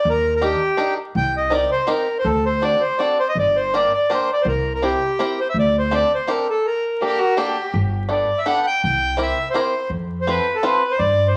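A reedy, up-front accordion carries the melody through this whirling, bittersweet musette waltz at 165 BPM in 3/4, moving from G harmonic minor into G major at 7.7 s, with a woody, dark pizzicato upright bass underneath and a bright, twangy banjo picked with fingerpicks adding percussive accompaniment through a cassette-tape haze. A biting, earthy violin with light vibrato slips in briefly as a second line from 7.0 s to 7.7 s, touched by analog delay. The cut from a longer piece sits in moderate spring reverb with the character of a home cassette recording, vinyl crackle and studio ambience.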